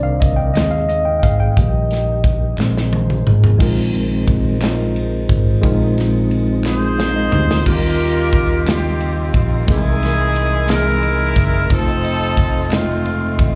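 A clear, tight horn section with light vibrato carries the melody from 6.7 seconds in this soulful, jubilant slow gospel excerpt in 6/8 at 59 BPM. It enters after a solo turn from a worn, slightly out-of-tune tine electric piano with slapback echo and near the close of a solo from a soft, flute-like tonewheel organ with fast rotary speaker, chorus vibrato and key click, while a distant French horn section holds sustained chords until 7.6 seconds. A dark, round fingered bass, a punchy, polished drum kit with fills, and very quiet crisp group handclaps drive the chords from Cm9 to F7, all heard through a club PA with light reverb.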